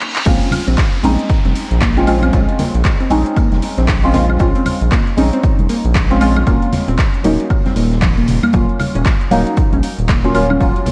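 Deep house at 116 BPM in Bb minor with a moody, swung 16th feel: after a reverse cymbal, downlifter and drum fill open at 0.0 seconds, the drop lands at 0.3 seconds on Bbm7, moving to Ebm7 at 6.5 seconds, with a punchy, tape-warm electronic kick and a round, deep analog bass up front, a dark, soft chord stab coloured by chorus, phaser and diffuse ambient delay, a gentle, full-bodied pluck arpeggio in the background, an overdriven deep house kit with metallic hats, claps, shaker and woodblock, very quiet bright congas and a faint big-room acoustic kit with snare and tambourine, all set in small room ambience with a cassette-tape character.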